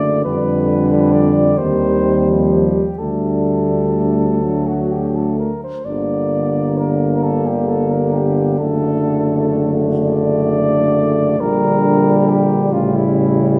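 A slow, hymn-like brass band passage in 6/8 opens with all five parts sounding together from the start, its melancholic and solemn mood set at 43 beats per minute with uneven, rubato pacing. A dark cornet carries the melody with light vibrato, heard close and in a classical style. A tight, mellow French horn section sits in the background with a second line, while a clear euphonium and trombone fill in the accompaniment beneath. Up front, a warm tuba anchors the bass with vibrato and a distant, roomy quality. The harmony moves from G7/F through Cm/Eb and a Dsus4 resolving to D, settles on Gm at 5.9 seconds, and ends on A7 at 12.7 seconds. The whole passage rings in a reverberant recital hall, heard from further back in the room, and is cut from a longer piece.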